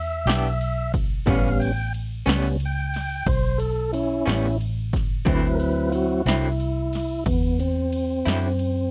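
A clear, clean tonewheel organ through a slow rotary speaker leads this gritty, soulful slow blues in 12/8 at 60 BPM, sustaining chords that move from Em7 to A9 at 1.3 seconds and D9 at 5.3 seconds in D mixolydian. Underneath, a round, foam-muted vintage electric bass holds the low end while an electric guitar through a small old amp adds slightly broken-up, lo-fi accompaniment with tremolo. A punchy house drum kit of kick, snare and ride sits up front in the dark, lightly reverberant production, in this short cut from a longer piece.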